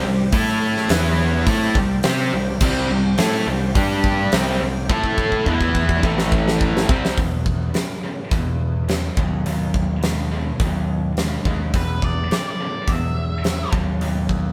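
A huge arena drum kit with a fat snare, punchy kick and bright cymbals sits up front in this swaggering, gritty classic rock piece at 105 BPM, alongside a tight, distorted guitar riff and a growling overdriven bass. Two crunchy, warm overdriven guitar riffs (one double-tracked) and a very quiet tonewheel organ with chorus vibrato and a slow rotary speaker hold the background through the first section, before a drum fill from 4.9 s leads into the second section and a dark octave-fuzz lead guitar adds a brief second line from 11.8 s, with the band captured live in one room with light reverb.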